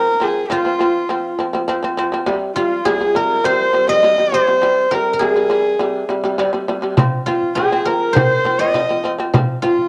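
A home cassette recording with a moderate spring reverb frames this windswept, vast Mongolian folk passage, cut from a longer piece, with a tape-worn tint on the fiddle, guzheng and shamisen. Up front, a clear horsehead fiddle carries the melody with light vibrato, portamento and a nasal, husky bite, while a silvery, fingerpicked guzheng rings out a second line and a buzzing, plectrum-plucked fretless shamisen adds powerful arpeggios. A small, close and dry frame drum, played with soft hands, joins at 7.0 s.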